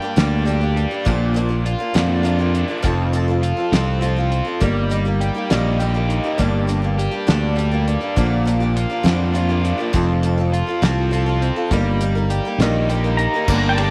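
Wistful and reflective, this folk rock and heartland rock excerpt moves at a slow 68 BPM in a straight 6/8, cycling through Gm, Bb6, F and Eb/G as a woody, boxy old acoustic guitar is picked up front beside a dark, overdriven, double-tracked electric guitar riff. A round, punchy fingered bass and a cloth-damped, thuddy drum kit with a fat snare and dark cymbals join at 0.2 seconds, all in a small room with light reverb. Near the end, at 13.2 seconds, a twangy pedal steel guitar with tape echo enters high in its range, followed by a faint, floating chamber string section and a brief jingle of tambourine at 13.5 seconds.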